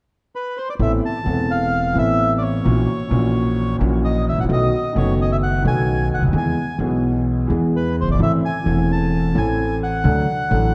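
A reedy, dark bandoneon opens the melody at 0.4 s with tape echo, setting a sultry, melancholic tango mood at 130 BPM in a loose, rubato 4/4. At 0.8 s a boxy, up-front concert grand piano enters with long-sustaining, deep-bass accompaniment, joined by a woody, thumpy pizzicato upright bass, as the harmony moves from Amadd9 through F#7/A#, B7, E and Am to D. A dark production and a long recital-hall reverb wrap this brief cut from a longer piece.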